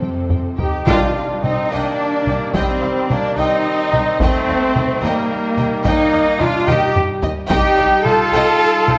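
A taiko ensemble opens this dark, relentless cinematic orchestral cue with a drum fill, its heavy sticks sounding close and dry, while the string sections, French horns and cellos sound together from the start. At 72 BPM in 6/8 and C dorian, the music moves through Fadd9, Cm and Eb before returning to Cm. Two violin sections carry the melody and a second line, lush and distant in the background with vibrato, as a smooth viola section accompanies and a rich, prominent cello section joins the double basses on the bass. Mellow French horns hold roomy, distant sustained chords. From 0.6 seconds a very quiet flute ensemble adds a pure, crisp-edged second line, and a solo trumpet with a soft attack plays stabs. A band accent lands at 0.9 seconds, very quiet timpani with hard mallets sound between 0.9 and 1.7 seconds, a second taiko fill arrives at 6.7 seconds, and the whole ensemble sits in a wet scoring-stage reverb.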